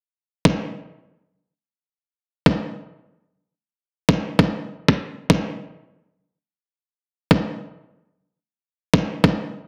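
A sampler-style electronic kick drum carries this short glitch hop excerpt, thumpy and gritty, sitting up front with compressed punch at its natural pitch. Re-recorded in a large room, the kick is shaped by high-pass filtering on both the drum itself and its room sound, which trims away the deepest low end. It plays from 0.5 to 9.4 seconds in 4/4 with a swung sixteenth-note feel that gives the groove a loose, bouncing character. The mood comes across as playful yet rough-edged. The production is dark and dry, with little reverb, so the kick's grit stays close and immediate.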